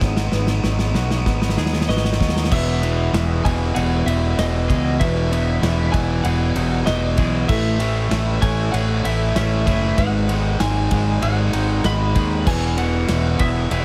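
A growling, overdriven fingered electric bass sits up front in this soaring, hopeful post-rock passage at 96 BPM in E major, driven by a loose indie drum kit with a pumping small-room sound whose opening fill builds to a shift at 2.5 seconds, where a compressed overdriven electric guitar riff joins a bright fuzz guitar riff in the background, very quiet twangy clean guitar arpeggios, and soft felt-muted upright piano arpeggios with audible action noise, while an electric slide guitar, slightly broken-up and bathed in tape echo, carries the melody from 1.9 seconds over chords moving from G#m7 through Emaj7 and Amaj7, all in a light studio reverb.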